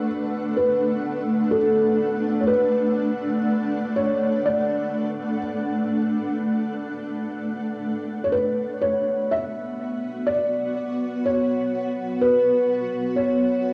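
A felt-muted upright piano, soft and intimate with audible action noise and a cassette-tape, analog-delay sheen, carries the melody in this melancholic, serene ambient excerpt at 62 BPM in B minor alongside a bright, blurred granular cloud pad whose detuned sustained chords shimmer through reverb, the harmony moving from Bm7 to F#sus4 at 8.3 seconds inside a wet small room with the character of a home cassette recording.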